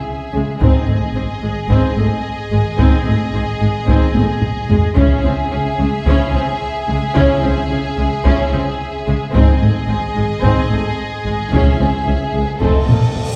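A steady, straight 4/4 pulse at 110 BPM drives this short cut from an epic orchestral film score in C# harmonic minor, heroic in mood and carried by a close taiko ensemble struck with hard sticks, with drum fills at 4.2 and 12.9 seconds. Two violin sections open together: a lush, vibrato-rich section holds the high melody, while a fuller-bodied section with a smooth top and light vibrato sits just beneath on a second line. Close studio violas add bowed accompaniment, and cellos and double basses, the latter soft in attack and expressive, anchor the bass from further back. Mellow, distant French horns sustain chords in the background as the harmony moves between C#m and G#, settling back on C#m at 11.5 seconds, when a very quiet, dry timpani note on C#3 sounds, before turning to F7. A huge, bright cymbal swell rises from 12.5 seconds into the close, all heard from further back in a wet scoring-stage reverb.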